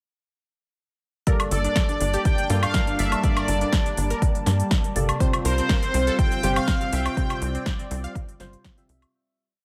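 A dreamy, expansive progressive house piece in G minor at 122 BPM opens straight into its drop at 1.3 s. An overdriven four-on-the-floor kick sits up front with a punchy drum kit of crisp hats, snare and woodblock, while a tight, nasal sequencer bass drives off-beat lines under a smooth analog pad, a dark chord stab with syncopated pushes, and a bright, phased unison pluck repeating a sixteenth-note riff with 12-bit grit. A soft supersaw carries hook phrases until 7.6 s, and a fade-out begins at 6.5 s, all bathed in a reverb-soaked, pumping mix.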